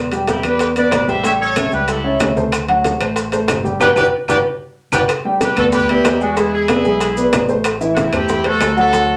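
A brisk, straight 4/4 salsa groove drives this festive, danceable fragment, with low-tuned congas, tight high-tuned bongos and woody claves set in the background while ringing metal-shell timbales and grainy maracas sit close and dry. A dark, boxy concert grand piano with short sustain carries the accompaniment up front over a round, amped fingered electric bass, as a brilliant, punchy horn section with light vibrato takes the melody from 0.3 seconds. Chords move through Em7, A7, D7 and Gmaj7, and a band accent from 3.8 seconds, joined by a drum fill at 4.1 seconds, leads into a repeat of the section that ends on Am, all in a small, wet room.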